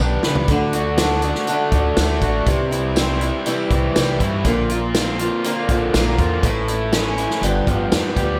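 An open-road, jangly stretch of folk rock with a heartland rock lean, cut from a longer piece, where a bright, overdriven garage guitar sits up front with its riff, double-tracked and coloured by slapback echo. Beneath it a picked acoustic archtop guitar plays accompaniment with audible finger squeak, a woody, growly upright bass anchors the low end, and a jingly, vintage-toned tambourine stays in the background. A natural, punchy country drum kit opens with a fill before the chords move from D through C and Bbadd9 to A and G7, all set in a lush hall reverb that gives a big arena sound.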